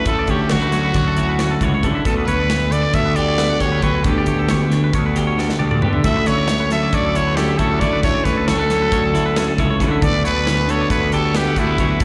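Heard through a venue's PA in a live setting, this short excerpt carries a light recital-hall reverb over a small-room ambience. It is intricate, playful math rock with a midwest emo lean, moving in 9/8 at 271 BPM counted in eighths with a straight feel, over chords that alternate between F#m7/D and Gmaj7/D. A raspy, growling trumpet carries the melody up front with light vibrato and a pop-style punch, its gritty tone trailed by slapback echo and digital delay. Beneath it, a fuzz-soaked picked bass sits dark, round and overdriven at the front. A clean electric guitar in the background plays accompaniment with a warm twang, while a second, brighter and compressed twangy guitar picks arpeggios higher up, both touched by slapback echo. A polished studio drum kit comes in at 0.1 seconds with hi-hat, punchy kick, medium-tuned snare and toms, sounding airy, and it drops a fill between 5.4 and 6.0 seconds.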